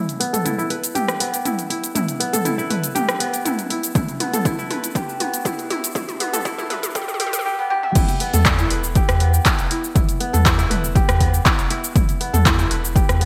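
A straight 4/4 afro house groove builds from a crisp, ringing, fingerpicked kora playing arpeggios through a low-pass filter sweep, sidechain pumping and digital delay, joined by an overdriven, up-front deep house drum kit of cabasa, handclaps, hi-hat, rim click, toms and crash cymbal with gated reverb and drum fills, then a punchy electronic kick from 4.0 s, until the drop at 8.0 s brings in a deep, round sine sub bass that also pumps, the whole earthy excerpt sitting in a lush hall reverb with a bright 1980s-style digital sheen.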